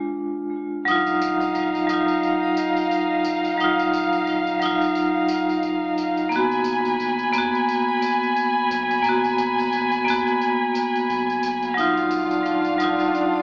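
Hypnotic and cinematic, this lightly swung 88 BPM trip hop excerpt in Eb harmonic minor opens with a bright, ringing vibraphone alone, its tremolo and tape echo up front, before a rich, intimate violin section enters at 0.9 s with sustained chords over a deep, round dub sub bass and soft tambourine and triangle in the background, while a tense, nasal bowed-like drone joins at 12.0 s, the whole mix sitting in plate reverb with a worn, warbling cassette character and an AM radio sound.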